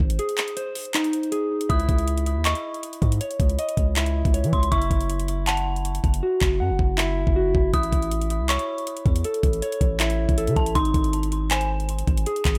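A clean, dark electric guitar plays arpeggios through spring reverb, delay and a low-pass filter over a deep sine 808 bass and a trap drum kit with a knocking kick, metallic hi-hats and handclaps, in this brooding, eerie half-time trap excerpt at 159 BPM in C# harmonic minor, where a detuned, inharmonic FM synth bell with chorus and delay adds a second line from 1.7 seconds, a break runs from 0.2 to 1.7 seconds, the hi-hats drop out from 6.2 to 7.7 seconds, and the chords move from G# through C#madd9, F#7 with the third omitted and A back to G#.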